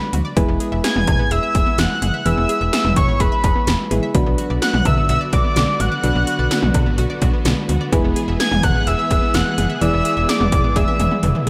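Bright 1980s-style digital production, set in a moderate plate reverb, carries this upbeat synth-pop cut from a longer piece, moving at 127 BPM in a straight 4/4 over E mixolydian. Up front, overdriven electronic pad drums hit with a punchy kick, gated snare and toms, metallic hi-hats and cowbell, and a drum fill closes things out at 10.8 seconds. A snappy, slap-like FM bass with a metallic attack sits low beneath soft, round electric-piano-like synth keys that add a gentle, chorused accompaniment. In the background, a full-bodied analog pluck spins sawtooth arpeggios through chorus, shimmer reverb and delay, and at 4.1 seconds a vintage, warbling string machine of violas arrives with slow-swelling sustained chords. Leading the way is a fat, nasal, detuned analog lead singing a high, mellow melody wrapped in shimmer reverb and delay, as the harmony shifts from E to Bm and back to E.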